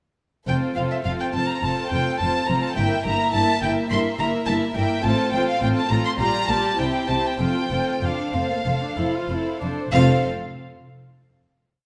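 A rubato pulse in common time gives this short, quick classical-period movement for symphony orchestra a lively, cheerful lilt, and the whole piece lasts only about 12 seconds. The first violins carry the melody up front with a warm vibrato and a soft, sul tasto touch, while the second violins play repeated notes and sustained chords beneath them. The violas fill in with repeated notes and held chords and answer at phrase ends. Low in the texture, the cellos sit in the background with repeated and sustained bass notes, and the dark, smooth-topped double basses double that bass line. All five sections are bowed and play together from 0.5 to 10.3 seconds, closing with a final chord from 9.9 seconds. The playing sounds close and intimate, set in the wet reverb of a recital hall.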